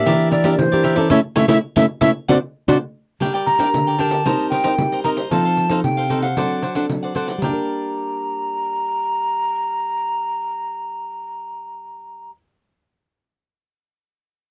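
A short cut from a longer samba and choro piece opens with a hollow, airy flute melody over crisply picked cavaquinho and fingerpicked nylon-string guitar, joined almost at once by a jingly pandeiro struck with hard hands. The mood is lively yet bittersweet, moving at 114 BPM in a straight 4/4. The band hits a shared accent from 1.1 seconds, and at 3.2 seconds the music settles into G minor. The mellow flute, played with a straight, tongued tone, sits up front beside the classical-sounding guitar, while the bright cavaquinho fills in beneath them and the compressed, saturated pandeiro drops out at 7.5 seconds. The recording has the dry, close feel of a 1970s studio, touched with light reverb.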